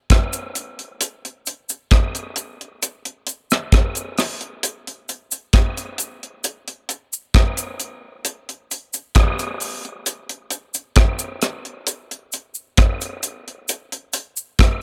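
A deep, dry reggae drum kit sits up front, its tight kick, hi-hat and rim click carrying this hypnotic, meditative groove at 66 BPM in a straight 4/4. Beneath it, a close-miked acoustic cabasa part with egg shaker and group handclap sounds adds a softer layer of percussion. A light reverb gives the room some air across this short passage cut from a longer piece.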